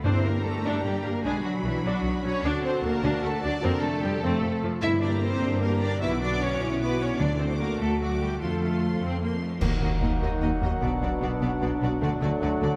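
Cinematic heroic adventure film score in 6/8, adventurous and determined, in which lush vibrato violins carry a high melody over a second violin line, background violas, a rich cello and double bass foundation, ringing thumb-plucked harp arpeggios, very quiet timpani and mellow French horn chords, with bright cymbal swell, clash cymbals and concert bass drum arriving at 7.2 s, before a pure flute, a distant clarinet and a clear, vintage-toned trombone section join on an accented change at 9.6 s, set in a moderate concert hall reverb.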